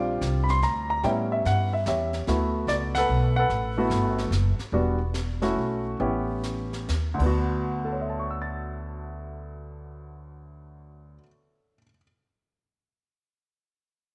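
A jazz piano trio excerpt in 3/4 and D major, swinging at 124-146 BPM with a sophisticated, warm mood. The baby grand piano carries the melody and sits present and up front, ranging from D2 to A6 through the full 12.0 seconds, while the pizzicato upright bass, woody and growly on steel strings, holds the low end until 11.2 seconds. A brushed drum kit plays softly behind them from 0.2 to 7.3 seconds, with dark cymbals, a high-tuned snare and a boomy kick in an airy, polished room sound. The band hits an accent together at 2.9 seconds, and the tempo slows through the passage from 4.7 to 7.4 seconds as the harmony moves from Em7 through B9sus4 and A9 to a brief chordless break before landing on D6. A moderate echo chamber reverb gives the trio a roomy glow.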